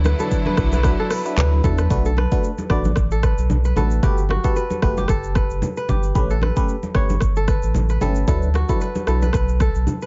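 A ringing, fingerpicked kora riff with tape echo carries this mellow, smooth afrobeats excerpt in B minor at 113 BPM, with a gentle 16th-note swing, set over a deep, round sub bass and an up-front electronic drum kit of handclaps, smooth hi-hat, deep kick, rim click and shaker. A biting FM electric piano with a phaser adds decaying accompaniment from 0.2 seconds, while congas sit in the background and a lush, bowed string section holds sustained chords only until 1.9 seconds. The harmony moves through D6/9, Bm7, Gmaj9 and A9 in a small, dark-toned room.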